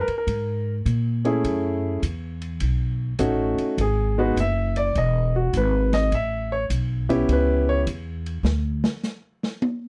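A clear, up-front concert grand piano and a woody, thumpy pizzicato upright bass open this smoky, swinging jazz piano trio excerpt, with the piano soloing over F#m9, B7, Emaj9 and A9 changes while an acoustic drum kit with dark cymbals, a boomy kick and a medium-tuned snare sits lower in a dry, close 1970s-style studio sound, before the drums take a short solo from 8.5 s, after the piano stops at 7.8 s, as the bass carries on until 8.8 s.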